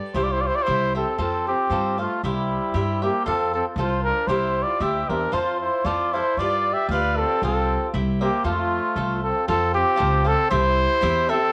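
Mexican folk in the mariachi tradition, this short, proud and festive cut from a longer piece moves at 116 BPM in a straight 2/4 and sits in F major. A warm trumpet carries the melody up front with a soft attack and classical poise, and a mellow trumpet with light vibrato shapes a lower second line beneath it. A bright, crisp cavaquinho is picked as accompaniment, while a woody, thumpy upright bass played pizzicato on gut strings anchors the bottom, also up front. The harmony swings mostly between C and F, reaching G7 at 6.4 seconds and a Csus4 that resolves to C before returning to F. A moderate spring reverb lends the ensemble a gentle sense of space.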